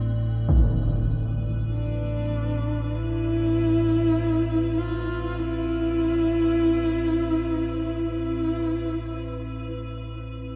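Unsettling and dark, this free-time dark ambient drone excerpt, cut from a longer piece, rests on a deep, rumbling drone held up front from the start, with an icy, crystalline glass pad shimmering high above it through chorus and shimmer reverb. A huge, muffled impact lands at 0.5 seconds over a C/A chord, and at 1.7 seconds a husky, woody horsehead fiddle enters up close, its bowed line bending with vibrato and portamento inside a diffuse delay. A huge, wet reverb with a 7.4-second tail surrounds the parts before the sound fades out from 7.0 seconds.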